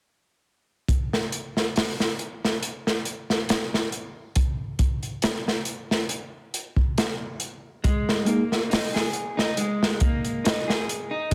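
Trip hop with a brooding, smoky mood, moving at a slow swung pace in 4/4. A crunchy breakbeat drum kit of hi-hat, kick and snare enters at 0.9 seconds and carries the first stretch alone, its gritty, saturated sound sitting up front with a tight kick, a medium-tuned snare and a rolled-off top. At 7.8 seconds, as the harmony settles on Ebsus4, a dark electric guitar at the edge of break-up joins with picked arpeggios, slightly broken-up and treated with tape echo. At 8.3 seconds a mellow tine electric piano adds the briefest clean, direct touch of accompaniment, colored by harmonic tremolo and tape echo. The whole sits in a small room ambience, and this cut from a longer piece ends at 11.3 seconds.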